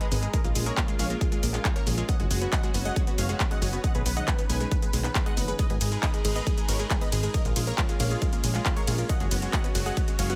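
A punchy, detuned supersaw stab carries a soaring melody over a lush, slow-blooming unison pad, a round, warbling analog pluck arpeggio in the background and a layered big-room kit of handclaps, hi-hat, ride and shaker, with a funky, plucky analog bass entering at 0.1 seconds and an up-front punchy kick at 0.3 seconds, every part but the kick pumping to the sidechain in this euphoric uplifting trance excerpt, with tape echo on the stab and pluck and little reverb overall.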